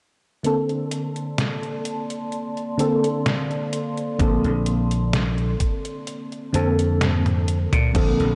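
Vaporwave at a slow 64 BPM in Bb major, faded and nostalgic, this short excerpt opens on a Bbmaj9 chord with a soft, round FM electric piano carrying tremolo, ensemble chorus and analog delay over a dark, detuned tape-like pad and a detuned 8-bit drum machine whose crash, hi-hat, medium-tuned snare and toms sit in gated reverb. At 4.2 seconds a growly, punchy slap bass with tube saturation arrives alongside a thumpy electronic kick, which drops out at 6.1 seconds, and the drum machine then plays a fill from 7.0 to 7.9 seconds. The drums have a sampler-style, tape-softened character heard in a large room, and light reverb colours the whole mix.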